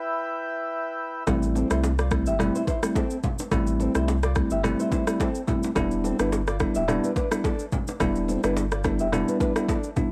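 Afrobeats in A minor at 107 BPM with a mellow, hypnotic swing, this excerpt opens on a reedy, full accordion holding sustained chords alone before a bell-like tine electric piano, a deep round sub bass, an electronic afro-pop kit of deep kick, rim click and shaker, and ringing hard-handed congas and bongos arrive at 1.3 seconds, joined at 1.6 seconds by a dark, boxy, thumb-plucked flamenco guitar riff with finger squeak and analog delay, all set in a dry, gritty cassette-tape sound.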